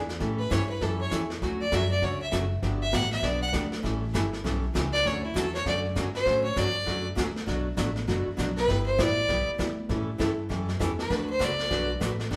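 Cheerful and swinging, this brisk western swing excerpt in D major moves at 198 BPM with a lively swing feel, as a clear, biting fiddle with light vibrato carries the melody up front over chords like Dmaj7, Gmaj7 and A7. Underneath, a growly, thumpy pizzicato upright bass and a full-bodied picked jumbo acoustic guitar with old strings keep things moving, while a vintage brush kit with a tight kick and rolled-off top adds brushed snare and hi-hat. The band sounds as if playing live in one room, with a generous studio reverb around them, and the fiddle drops out at 11.9 seconds, shortly after the closing D6 arrives.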